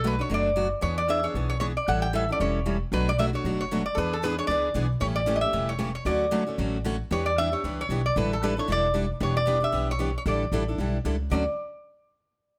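A lap resonator guitar carries the melody up front, its metallic, nasal slide tone played with fingerpicks giving this lively, charming excerpt of acoustic string swing its character. Underneath, a picked steel-string acoustic guitar supplies bright accompaniment, while an upright bass on gut strings plays pizzicato with a woody, thumpy low end. At 2.9 seconds, a plugged-in steel-string acoustic guitar joins in the background, adding a second picked accompaniment layer. The tune swings briskly at 229 BPM in D major. The harmony opens by cycling through Bm7, E7 and A7 before resolving to Dmaj7, then from 7.1 seconds it alternates Em7 with A7sus4. Light reverb gives the ensemble a touch of space.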